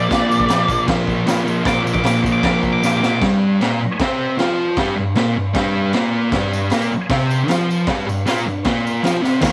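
Garage rock with a raw, swaggering mood, this short cut from a longer piece drives along at 154 BPM in a straight 4/4 in G minor. A thick, dark fuzz guitar, double-tracked and up front, plays the riff throughout, while an octave-fuzz lead guitar takes a picked, distorted solo over a Bb chord for the opening 3.2 seconds before the harmony settles on G minor. The raw drum kit sits close and saturated, with a boomy kick, a high-tuned snare, crash cymbal and a gritty, rolled-off top, and it plays a fill around 2.8 seconds to close the solo. A jingly, bright tambourine rings in the background for the first stretch, drops out, then returns from 6.3 seconds. Light studio reverb surrounds the band, keeping the sound rough and immediate.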